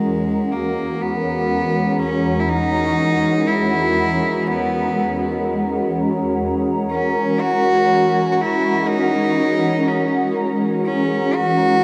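Ambient excerpt at 61 BPM in 4/4, warm and weightless, resting on an F#9 chord and tuned to A4 = 439 Hz. A shimmering, ethereal pad with a dark, granular, slow-attack sound holds sustained chords through chorus and phaser. A single bowed cello, rich and earthy with a biting edge, carries the melody through a delay. Both parts sit up front and fade in across the full 11.8 seconds, inside a huge reverb with an eight-second tail.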